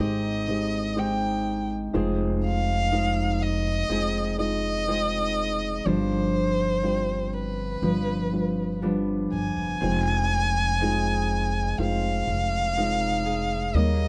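Melancholic and reflective, this short cut from a longer acoustic folk-pop ballad unfolds in a straight, unhurried 4/4, with a dark, expressive bowed violin singing the melody up front with vibrato and portamento over a soft, boxy felt-muted upright piano whose action noise is audible, a ringing fingerpicked concert harp weaving arpeggios in the background, and a woody, thumpy pizzicato upright bass on gut strings, all caught by close, detailed microphones in a dry, intimate sound as the harmony moves from Abmaj7 through Fm7 and G7sus4 to G7 before a second section opens on Fm7 at 9.8 seconds.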